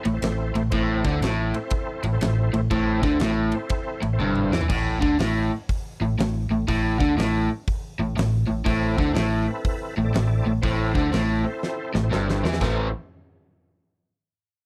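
A dry, close 1970s-style studio sound with light reverb frames this gritty, smoky blues rock and southern rock excerpt in A minor at 121 BPM with a swung feel, where a bright, double-tracked overdriven guitar riff sits up front over a round, punchy fingered bass and a huge arena kit with a fat snare and tight kick, while a thick overdriven tonewheel organ through a slow rotary speaker and chorus vibrato holds sustained chords from 0.0 to 4.6 seconds and returns at 8.7 seconds, with drum fills at 4.2 and 11.6 seconds.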